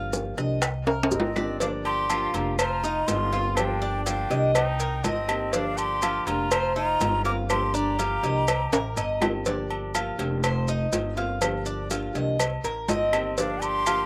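A straight 4/4 groove in Cuban son and guajira style sets a nostalgic mood, driven by tight, high-tuned bongos and cowbell in the background, grainy maracas up close, and ringing metal-shell timbales and agogo bells, with woody claves joining at 0.6 seconds. A dark, thumpy pizzicato upright bass on gut strings anchors the low end, while a thumb-plucked classical nylon-string guitar with fresh strings comps underneath. The picked Cuban tres spins arpeggios over its double strings, some octave-doubled, giving a metallic shimmer. At 1.1 seconds a breathy, slightly unsteady jazz flute with soft attack, vibrato and a slapback echo takes the melody, shadowed by a clear, punchy vintage-toned trumpet on a second line; both drop out at 9.2 seconds and return briefly near the end. Drum fills mark the entry of the winds and their exit, the harmony cycles among Gm7, Cm7 and F7sus4, and the dry, open-air sound carries little reverb in this excerpt cut from a longer piece.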